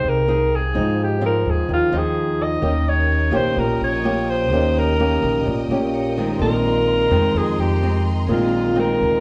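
A breathy alto saxophone carries this smooth, wistful bossa nova excerpt at 128 BPM in a straight 4/4. It plays the melody up front in a vintage jazz style with a soft subtone, over dark, fingerpicked nylon-string guitar whose small sound carries an audible finger squeak. A woody, thumpy upright bass is plucked underneath, while a metallic, ringing vibraphone with medium mallets and medium motor vibrato sits in the background. At 2.6 seconds a bright, lush studio string section enters with bowed, sustained chords full of intense vibrato. The harmony moves from Fm7 through Ab6 and Eb7 to Bb9sus4, and a wet reverb places the group further back in the room.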